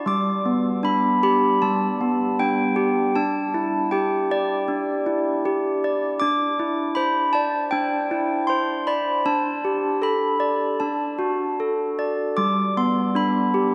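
Handbells carry this tender children's lullaby entirely on their own, sounding clear and bell-like with medium clappers and sitting up front in the mix. The piece moves at a gentle 78 BPM in 4/4 and G major, but the rubato feel lets the pulse breathe freely. The bells span from G3 to D6, ringing through a gentle progression of G, Em7, Cadd9 and Dsus4 before resolving to D and settling back on G at 12.4 seconds as the opening section begins again. A wet cathedral reverb with a long 5.2-second decay places them in a vast, echoing space, and the top end is rolled off for a mellow glow. Cut from a longer piece, it runs just under 14 seconds.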